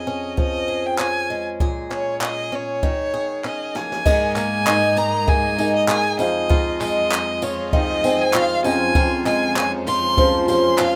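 A lightly swung 16th-note groove at 98 BPM in 4/4 carries this short acoustic pop excerpt in Ab major, heartfelt and carefree in mood. A picked, swing-style acoustic guitar sits up front from the first moment alongside a bowed solo violin with a focused, vibrato-rich tone that carries the melody. A jazz kit played with brushes enters at 0.4 seconds, with dark cymbals, a boomy kick and a medium-tuned snare plus tambourine and handclaps, while a crisp, very quiet group handclap joins at 1.0 seconds. As a drum fill leads into the second section, a woody upright piano slips in softly in the background at 4.0 seconds and a lush, close studio string section adds sustained bowed chords beneath. The harmony moves from Db/F through Bbm7 and Eb7sus4 to Absus2, Fm7 and Dbmaj7/F, all set in a natural small-room ambience.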